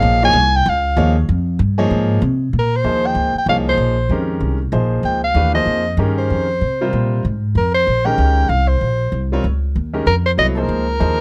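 A mellow soprano saxophone opens this jazz excerpt with a solo over clear grand piano and plucked upright bass, all three sounding from the first moment, set in Bb dorian around a Bbm11 chord. The tempo is a brisk 191 BPM in 4/4 with a swung eighth-note feel, and the mood is searching and intense. The saxophone carries the melody up front, its subtone sound marked by light vibrato, scooped notes and a smooth top. The grand piano supplies natural-sounding accompaniment sitting a little lower in the mix, while the pizzicato bass on steel strings gives a woody, warm foundation. After 2.5 seconds the music moves into a new section that runs to the end at 11.2 seconds, captured with close, detailed microphones and light reverb.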